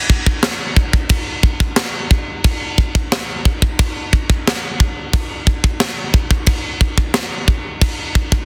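A straight 4/4 pulse drives this short metal fragment, cut from a longer piece and carried entirely by a tight metal drum kit that plays from 0.1 to 8.4 seconds. The kit sits up front and sounds acoustic and polished, with a tight kick, a high-tuned snare and bright crash cymbals. Its airy, big-room character gives the beats an epic, aggressive weight even though little reverb is applied. The mood is forceful and commanding throughout the single section. The drums come through a dense, heavily limited modern master.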